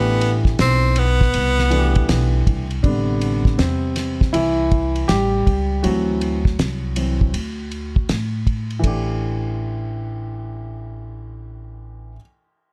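At 80 BPM in 4/4 with swung sixteenths, this nocturnal, smoky jazz-hop fragment in A dorian opens with a breathy, close-miked tenor saxophone playing a short vibrato melody that ends at 2.5 seconds, set in slapback echo and plate reverb. A dark, mellow grand piano with audible action noise carries the chords from Am11 through Am7 and D7 to A5 and takes a solo from 2.8 to 8.8 seconds, over a woody, thumpy pizzicato upright bass. A cloth-damped, thuddy drum kit with a fat snare, tight kick, dark cymbals and a rolled-off top sits up front until 9.1 seconds, all under a light reverb.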